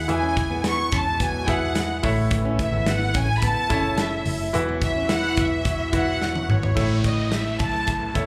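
This is a piano-driven pop piece at 108 BPM in 4/4 with a straight feel, warm and anthemic in mood. A lush, bowed violin section carries the melody up front with smooth vibrato, while a mellow French horn section plays a tight second line in the background until 6.5 seconds. A bright concert grand piano with deep bass and short sustain supplies the accompaniment. Beneath it sit a reedy tonewheel organ, very quiet, holding sustained chords through a slow rotary speaker with key click, and a dark, round, foam-muted picked electric bass. A full-bodied fingerpicked jumbo acoustic guitar plays a riff in the background with audible finger squeak, and a modern acoustic kit with a tight kick and medium-tuned snare drives the rhythm, with a drum fill at 6.2 seconds. The harmony moves from E to A and Esus2, landing back on A as an electronic downlifter enters at 6.8 seconds. Slapback echo touches the violins, horns, piano and guitar, and the whole sounds like a live gig heard through a club PA, with club reverb.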